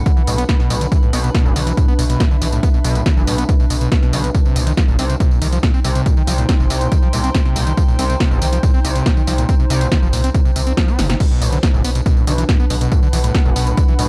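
Industrial and driving, this excerpt of peak-time techno runs at 140 BPM in a straight 4/4, set in B phrygian and moving from Bm to Cm at 4.3 seconds before returning to Bm at 11.2 seconds. A punchy, tape-toned electronic kick sits up front from the first beat, joined by an analog drum machine supplying snare, hi-hat, tambourine and crash cymbal, its hats and cymbals pumping with sidechain compression, with a drum fill arriving at 11.0 seconds. Underneath, a gritty, aggressive synth bass built from sawtooth, sync and wave-folded tones pushes low with tube saturation and sidechain pumping, entering at 0.3 seconds. Above it, an overdriven acid bass riff squelches with resonant, plucked filter bites, distortion and tape echo. A warbling, lo-fi pad of detuned square and triangle waves drifts higher with slow attack, chorus and reverb, lending a nostalgic haze to the dark, warm production.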